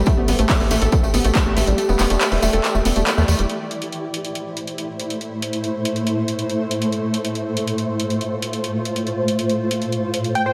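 A straight 4/4 pulse at 140 BPM drives this euphoric uplifting trance excerpt in A minor, with an overdriven, punchy electronic kick that stops at 1.4 s and an overdriven analog drum machine supplying handclaps and hi-hat, both re-recorded in a large room, while a jingly tambourine sits in the background. A tight, saturated sequencer bass, an analog pluck playing round, detuned arpeggios with chorus and delay, and the tambourine all fall away by 3.5 s. The drum machine carries on beside a shimmering, ethereal pad with an octave-up shimmer, which sustains chords from G/A and Em7 to Am and F/A under sidechain pumping. An airy, detuned supersaw stab enters up front at 10.4 s, and the whole dreamy mix is soaked in a lush hall reverb.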